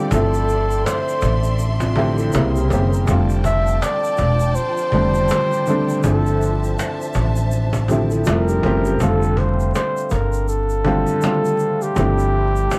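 Nostalgic and cosy, this swung lo-fi hip hop excerpt sets a breathy, close-miked flugelhorn melody with scooped notes over a worn, slightly detuned upright piano, a dark, thumpy pizzicato upright bass, a woody cajon with hard hands and faint snares, and a grainy tube shaker, while a lush bowed string section with vibrato holds chords until 9.0 s and a mellow tine electric piano with tape echo sits in the background from 1.8 s and again from 7.9 s, beneath vinyl crackle and a small room's reverb.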